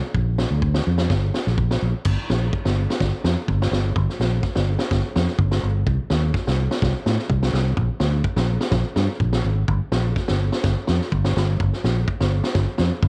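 A round, dark fingered electric bass sits up front from 0.1 to 13.1 seconds in this bittersweet, danceable highlife guitar band excerpt in G minor at 126 BPM, joined throughout by a punchy vintage drum kit with a high-tuned snare, dark cymbals and a rolled-off top, all under light reverb.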